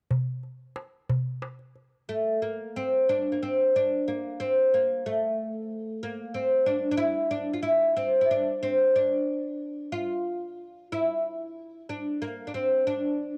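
A fretless oud carries this short fragment of Arabic maqam ensemble music, its plectrum-plucked double strings sounding woody and deep as it sits up front from 2.1 seconds to the close at 13.4 seconds. Its melody ranges from A3 to F4, and the oud alone bears the soft grain of cassette tape. Before it, a small metal-shelled darbuka plays by itself from 0.1 to 1.8 seconds, crisp, high and close, with a dry, forward presence. The pulse moves at 61 beats per minute in dotted quarters within a straight 6/8, giving the piece a hypnotic, soulful pull. A light reverb and a touch of studio ambience frame this intimate home recording made on cassette.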